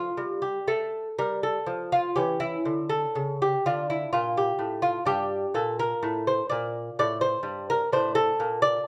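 A solo lute opens at 0.0 s on a rootless D minor chord, its mellow gut strings plucked up front in a baroque-style classical dance. The piece moves in a flowing, solemn 12/8 at 83 beats per minute, counted in dotted quarters, and the playing stretches and yields with a rubato feel. Fingerpicked with a delicate touch across paired strings, some doubled at the octave, the lute spans G2 to D5 in D minor, tuned to A4 = 442 Hz. The harmony passes from D minor through A, an open D, and G minor, settling on an open D over A near 7.9 s. A light reverb surrounds the instrument, captured live in a single room, and this brief excerpt breaks off at 8.9 s, cut from a longer piece.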